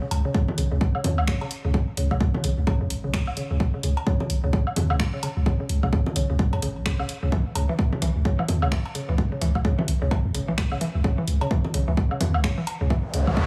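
A woody, ring-modulated mallet-like synth pluck pumps through chorus and digital delay under a filter sweep in this quirky, hypnotic minimal techno, with a deep, pitch-dropping sub bass, an overdriven punchy kick, bright-hatted house drums with finger snaps, delayed cowbell, congas and woodblock in a small dry room, and a brief noise sweep at 13.0 seconds.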